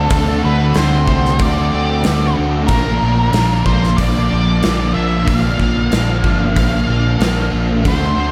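Shoegaze-leaning dream pop rock moves at a straight 93 BPM in 4/4, hazy and wistful, in a short excerpt cut from a longer piece that sits on D5 before shifting to Bb at 2.7 seconds. A dark octave-fuzz lead guitar carries the melody between A4 and F5, its distortion trailing into a diffuse ambient delay, while a thick fuzz guitar grinds out a riff through lush chorus. An overdriven semi-hollow guitar adds a second riff with a hollow-body character and reverse reverb, and a very quiet clean electric guitar picks arpeggios alongside them. A growling fingered bass, overdriven and direct, anchors the low end from G1 to D2. The gated 80s drum kit enters at 0.1 seconds with hi-hat, tight kick and a medium-tuned snare, sitting up front in a bright stone room, and the whole mix is soaked in a lush hall reverb for a dreamy, enveloping sound.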